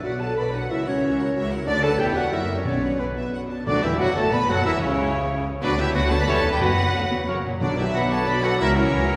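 A distant, expressive violin section carries the melody through this urgent, stormy excerpt of a fast romantic movement for symphony orchestra in B minor at 184 BPM in 3/4, with lush background violins, a bright flute, a clear clarinet and an oboe as second lines over a very quiet dark viola section and bassoon. Mellow French horns hold chords while a woody, close double bass section and smooth cellos supply the bass, and hard-mallet timpani and a barely audible cymbal swell and tam-tam add very quiet percussion. At 3.7 seconds a band accent brings in roomy trumpet stabs and a tight trombone section, all bathed in wet concert hall reverb.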